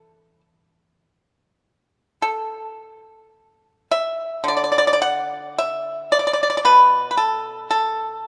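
Unfolding in a free, rubato pulse around 50-57 BPM, this short excerpt of pastoral, flowing Chinese traditional music features a solo pipa in A zhi mode, its bright, dry, percussive fingerpicked tone sitting up front against a moderate scoring-stage reverb as it ranges from B2 to F#5, shifting into a new section at 2.2 seconds and continuing until 8.3 seconds.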